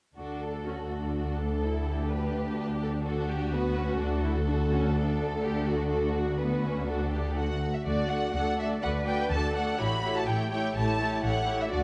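A dark production places a string orchestra on a scoring stage with a moderate reverb tail of 1.9 seconds, giving this quick classical-period movement in D major a spirited yet graceful character at 125 BPM in a straight 4/4. The first violins carry the melody with a lush, expressive tone, vibrato and soft attacks, while a chamber-sized second violin section supplies a smooth, even second line beneath them. Violas fill in the accompaniment with a smooth, even tone and a smooth top, and the cellos sit in the background on the bass, their line stretching from D2 up to B4. Up front and close, the double basses add a warm, bowed foundation that anchors the ensemble. The harmony moves from D to G over a D bass and back to D, and the passage shifts into a new section at 7.9 seconds before turning to an A7 chord at 9.8 seconds, where this cut from a longer piece breaks off.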